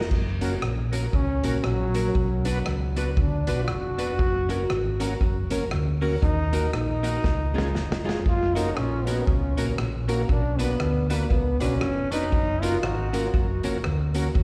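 A clear, up-front trombone carries a cheerful solo melody from 1.1 seconds over a joyful, swung ska groove in F# major at 118 BPM, backed by a round, hollow-body electric bass and a vintage drum kit with a punchy kick, dark cymbals and a drum fill at 7.2 seconds. In the background, a clean, picked archtop guitar and a smooth tonewheel organ with chorus vibrato and slow rotary speaker play accompaniment and stabs, both steeped in tape echo, slapback and plate reverb, while a jingly, very quiet tambourine joins at 8.6 seconds. The whole excerpt sounds like a live gig heard through a venue's PA, with recital-hall reverb around the band.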